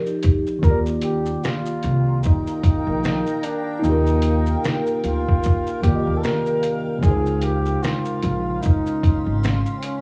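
A 75 BPM lo-fi hip hop groove in 4/4 swings gently on the sixteenths, built on an up-front, muffled sampler-style kit of thumpy kick, fat snare, hi-hat, shaker and finger snaps, with a woody pizzicato upright bass beneath, setting a mellow, cosy mood in Eb major. A worn, slightly out-of-tune tine electric piano carries the Ebmaj9 harmony before a shift to Dbmaj9 at 7.0 s, while a breathy, jazz-style flugelhorn takes the lead from 0.6 s after a brief ringing vibraphone figure with tape echo. From 2.1 s a cloudy granular pad blurs in behind, and most parts wear a soft cassette-tape grain in a small home-room ambience, in this passage cut from a longer piece.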